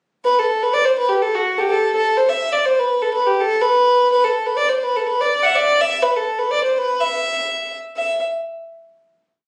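A dark, woody solo fiddle with a smooth top and light vibrato plays a spirited, driving celtic folk tune in a lightly swung 2/4. Its motif-based melody is set in period phrases and heard up front through moderate studio reverb on a compressed, phone-in-the-room recording. It plays from 0.2 seconds to 8.2 seconds, reaching a final note at 8.0 seconds.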